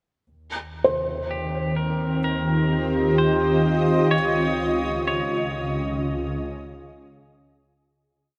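Luminous and warm, this brief, complete ambient piece drifts at 63 BPM in 4/4 with a straight feel, set in Eb mixolydian and tuned to A4 = 444 Hz. A bowed chamber double bass section opens at 0.3 seconds, fading in with a dark, smooth, even tone and light vibrato as it sustains the root. A felt-muted upright piano scatters soft, intimate arpeggio notes with short sustain and audible action noise, bathed in diffuse delay as it fades out. Up front, a shimmering pad of detuned, granular sine voices with an octave-up sparkle, chorus and slow attack holds ethereal, slowly shifting chords that move from Eb6 to Dbadd9 at 4.1 seconds, when the whole piece also begins its fade-out. A clean electric pedal steel guitar, played with fingerpicks and slide, fades in and traces arch-shaped motif phrases with volume swells and compression through the same diffuse delay. Everything sits in a huge, wet reverb with a nine-second tail, giving the piece a vast, glowing space.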